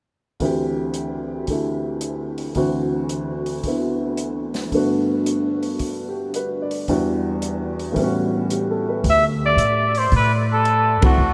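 Drenched in a huge, wet reverb that places the group in a vast, echoing space, this relaxed small-group swing excerpt in D mixolydian moves at 111 BPM with a 68% swing on the eighths. A woody, boxy upright piano with long sustain accompanies through D7sus4, D9, Gmaj7, Em9 and A13 changes alongside an acoustic drum kit with dark cymbals, a high-tuned snare and a boomy kick, both starting at 0.4 seconds. At 9.0 seconds a thumpy, gut-strung pizzicato upright bass arrives, and a vintage-toned trumpet soon takes the solo up front with light vibrato and scooped notes, before a band accent at 10.9 seconds.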